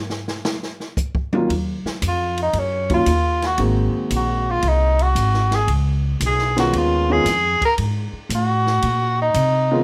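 Small-group swing and bop jazz with a relaxed, sophisticated mood, moving at an easy swung pace in this short excerpt from a longer piece. An acoustic drum kit with dark cymbals, a medium-tuned snare and a boomy kick opens alone at 0.1 seconds, the ride, hi-hat and toms sounding natural in a small room. A grand piano with long sustain and audible action noise enters at 1.3 seconds to comp, and a woody, plucked upright bass with steel strings joins just after, sitting up front. The tenor saxophone takes the solo from 2.1 seconds, its roomy tone shaped by vibrato and scooped notes. The harmony moves from a minor chord through ninth chords, all set in a moderate club reverb.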